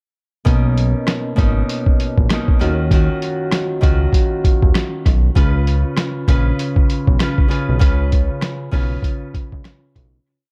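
An overdriven, sampler-style drum kit leads this short, reflective and gritty boom-bap hip-hop piece at 98 BPM, with a swung 16th-note feel. The compressed, pitched-down kit sounds muffled and thumpy, as if re-recorded in a small room, and sits up front with a hard kick and a medium-tuned backbeat snare layered with rim click, plus hi-hat. A fat analog bass, built from detuned, saturated sawtooth tones with a fast attack and a filter sweep, holds down a deep looped line just as prominently. Beneath them, an acoustic Celtic harp enters at 0.4 seconds with fingerpicked, ringing chopped chords repeated like a sampled loop, moving through Bmaj9, Ebm9 and Db7. The mix is dry on reverb yet echo-heavy, and the single verse fades out from 7.8 seconds until 10.3 seconds.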